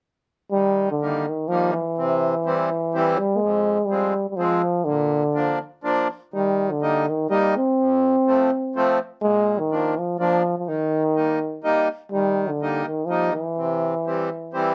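A clear, classical-style euphonium carries the bouncy, jolly melody up front in this short alpine folk dance cut, swinging in three over a reedy accordion accompaniment, both playing from 0.5 seconds to 14.7 seconds in a lightly reverberant room.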